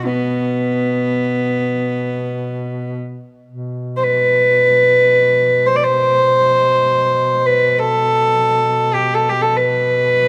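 In free, unmetered time, this Caucasian folk lament unfolds with a mournful, longing mood, tuned to A4 = 441 Hz. A single bowed cello carries the melody between B3 and D5 throughout, its rich gut-string tone reedy, period in style and placed close and up front, while a mellow duduk holds a distant, roomy drone on B2 at a much lower level, with vibrato and scooped notes. A moderate plate reverb surrounds this short excerpt, which opens with one statement of its theme and restates it from 3.4 seconds until 10.3 seconds.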